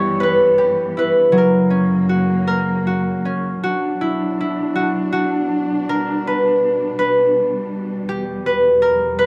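Set in a moderate studio reverb with a dark, warm production, this short cut from a longer lullaby moves at a rubato 53 BPM in 6/8, carrying a gentle, wistful mood. An up-front concert harp plays the melody with a bright, ringing, fingerpicked tone, while a distant symphonic string section holds lush, woody, bowed chords with vibrato beneath it. After opening on Em/G and F#, the music settles into B harmonic minor at 3.6 s, passing through Bm and G/B before landing on Em.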